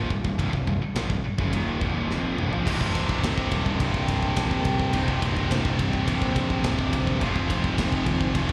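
Two bright, picked, distorted guitar riffs, one compressed and one scooped and high-gain, both with slapback echo, open this dark, heavy 106 BPM metal excerpt in C minor alongside a growly, fuzz-overdriven bass up front and a tight studio drum kit with a tight kick and medium-tuned snare. After a drum fill at 2.1 seconds, a soft-attack, very quiet bowed string section slips in with light vibrato just before a double-tracked third guitar joins at 2.7 seconds. The whole piece sounds like a live gig heard through a venue PA in recital-hall reverb as the harmony moves from C minor to F minor at 7.2 seconds.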